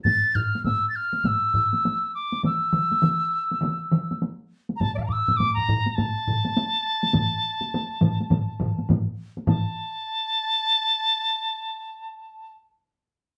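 A swung sixteenth-note pulse in 4/4 drives this Japanese traditional taiko ensemble piece, and the tempo keeps speeding up until nearly the end. Two taiko groups struck with heavy sticks sound close and acoustic from the start, and a third group with hard sticks joins at 2.4 seconds, sitting up front with a small-room character. Above them a bright wooden piccolo carries the melody across its high register, its pure tone marked by vibrato and tongued notes. The drums drop out around 10 seconds, leaving the piccolo alone until 12.5 seconds in a short closing section. The mood is driving and powerful, the band sounds like it is playing live in one room, and a wet studio reverb adds space. The clip is cut from a longer piece.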